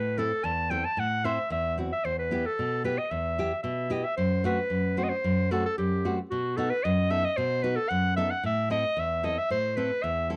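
Soulful and bittersweet, this brief klezmer passage in 2/4 sets a clear, present clarinet up front, its classical-style solo melody carrying a slapback echo across the full 10.3 seconds. Beside it, a fingerpicked nylon-string guitar with fresh strings gives full-bodied, deep accompaniment, finger squeak audible, moving through Am, Em, F#dim and B before returning to Am. The sound is a dry, close 1970s-style studio recording with a touch of studio reverb.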